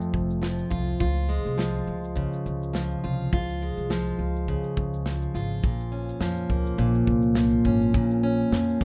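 Built on a lightly swung 16th-note feel at 104 BPM in 4/4, this short acoustic pop clip in Bb minor has a wistful, reflective mood, moving from F to Db before settling on Bb minor at 5.6 seconds. A dark, full-bodied picked steel-string acoustic guitar sits up front as the accompaniment, supported by a woody, thumpy pizzicato upright bass entering at 0.1 seconds and a modern studio kit of tight kick, medium-tuned snare and shaker heard in a small room. Light reverb gives the whole a gentle sense of space.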